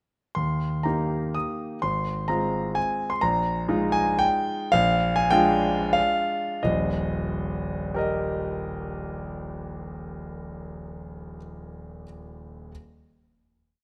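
Graceful and playful, this short classical waltz for solo grand piano moves in 3/4 with a flexible, rubato feel. The piano sounds clear and intimate, placed up front with a natural tone, and the faint noise of its action is audible beneath the notes. A single-line melody sits over a waltz bass, spanning Eb1 to Eb6 and passing through Fm/Ab, Bb7sus4 and Bb7 harmonies. From 2.5 seconds the pace gradually slows, arriving at a final chord section that runs from 6.7 to 10.6 seconds. Close, detailed microphones and light reverb give this complete little piece a crisp, present quality.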